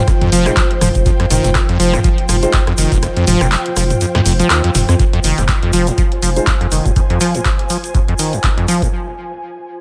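This gritty, trippy acid house piece, cut from a longer track, moves at 122 BPM in 4/4 with a swung 16th feel in F minor. Up front, a squelchy, resonant sawtooth acid bass plays a liquid riff with chorus, overdrive, delay and a vintage 12-bit sampler grit. A saturated sine sub bass and an overdriven, deep electronic kick, re-recorded in a small room, anchor it. A dry, punchy analog drum machine adds handclaps, hi-hat, rim click, snare and toms, and a grainy, close egg shaker sits in the background. Two pads float beneath: a mellow, warbling, detuned analog pad holds sustained chords with chorus and sidechain pumping, and an ethereal, airy unison pad adds a slow-attack texture with ensemble chorus and reverb. A dark baby grand piano drops in delayed stabs, and the opening drop's F5 harmony moves to Fm7 at 5.0 seconds. The kick falls away from 3.0 to 5.0 seconds, and the first pad ends at 5.0 seconds, when a filter sweep begins on the acid bass.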